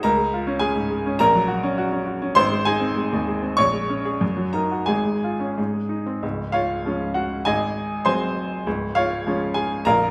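In a supple 2/4 with free rubato, this brief passage from a longer classical virtuoso piano study has a sparkling, brilliant mood, carried by a single baby grand piano that spans Bb0 to Db6. The piano sounds clear and natural, placed up front with a short sustain, and a moderate recital-hall reverb surrounds it. An opening section gives way to a new one at 6.2 seconds, which settles back onto its home chord by 8.7 seconds before the passage ends at 10.1 seconds.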